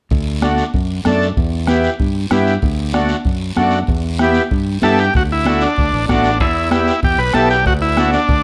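A buzzy vintage combo organ with light vibrato takes the melody up front from 4.8 s in this joyful, danceable cumbia excerpt at 191 BPM in D major, joining a reedy, dark accordion that has carried the accompaniment since 0.4 s, along with a bright, direct fingered electric bass, a dry soft-beater bombo, soft-handed congas in the background and a raspy guiro, all in light reverb as the chords move between D, Em and Dadd9.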